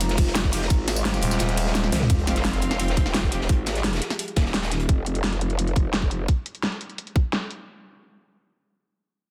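Dark technical drum and bass cut from a longer piece, tense and aggressive, where an up-front growling, wobbling growl bass and a tight electronic kick drive layered dubstep drums with a huge snare and metallic hats, over a gritty breakbeat kit in the background and a deep, moody ambient pad, while distant brass stabs, a thick FM bass that appears at 1.2 seconds, and a rich, bowed chamber string section with a sub drop entering at 2.1 seconds as the kick returns from a brief dropout and drum fill.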